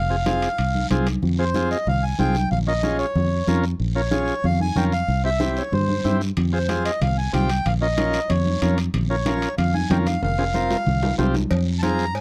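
A straight 4/4 cumbia pulse at 187 BPM drives this fiery, danceable Latin piece in F minor, where a reedy, full, close-miked accordion carries the melody up front over a round, dark, foam-muted fingered electric bass and a buzzy vintage combo organ, while soft-handed, ringing congas sit in the background, a raspy acoustic guiro adds texture, and saturated metal-shell timbales and cowbell, heard briefly at the start, return at 6.4 seconds ahead of a drum fill from 10.2 seconds, captured in a dry, close 1970s-style studio recording.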